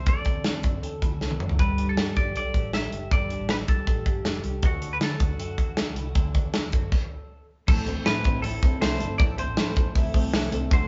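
Jangly indie pop at 158 BPM in a straight 4/4, wistful and restless, with a bright, clean semi-hollow electric guitar carrying the melody over phaser-tinted twelve-string electric arpeggios. A dark, foam-muted fingered bass sits in the background, and an up-front studio drum kit with a punchy kick and medium-tuned snare throws in a fill at 1.2 seconds as the chords move from D7 to Gsus2 and D, before the band stops at 6.9 seconds. At 7.7 seconds a full-bodied, shimmering fingerpicked twelve-string acoustic guitar with audible finger squeak joins as the harmony shifts to Am, all heard as a band playing live in one room with light reverb and a rolled-off top end.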